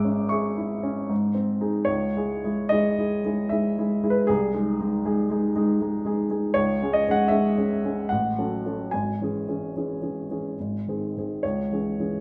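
A dark upright piano opens alone on a C-sharp minor chord over G-sharp in the bass, setting a passionate, bittersweet tone for this romantic character piece for solo piano. The tempo moves freely in rubato between 68 and 81 BPM in 3/4 time, and the brief opening phrase gives way to a longer second section at 1.9 seconds. The piano's tone is mellow and woody, placed up front, and it spans a broad register from deep G-sharp in the bass to D high in the treble. The harmony circles around C-sharp minor and its G-sharp dominant, with a turn to F-sharp minor before settling back on C-sharp minor at 11.4 seconds. A large, wet studio reverb surrounds the instrument, and the passage is cut from a longer work, ending at 12.2 seconds.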